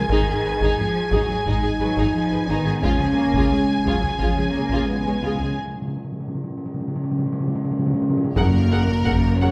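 Set in a moderate scoring-stage reverb, this heroic, triumphant cinematic orchestral passage, cut from a longer piece, opens with a distant, lush violin melody over a dark, tight French horn section, while a second violin line, background violas, expressive cellos and a rich double bass section fill out the bowed, vibrato-laden strings. Compressed, saturated taiko drums struck with heavy sticks drive the ensemble, and at 2.8 seconds close, articulate timpani on hard mallets enter up front with a fill. A break arrives at 5.6 seconds, and a drum fill at 7.7 seconds leads into a brief new section at 8.4 seconds.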